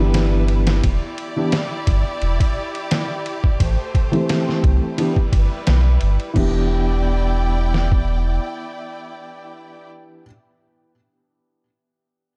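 Trip hop with a cinematic, hypnotic mood, cut from a longer piece and set in a dark production with little reverb, where a felt-muted upright piano plays a soft, intimate accompaniment carrying harmonic tremolo and tape echo, its thick felt and action noise audible, over a progression moving through G6, Em7 and Am7. A round, deep dub sub bass with tube saturation sits up front beside a compressed, pitched-down sampler-style drum kit with a thumpy kick, medium-tuned snare, crash and ride cymbals in a small room ambience. Behind them, a distant symphonic violin section holds lush bowed chords with vibrato until 9.9 seconds, while the drums stop at 8.1 seconds and the bass at 8.4 seconds.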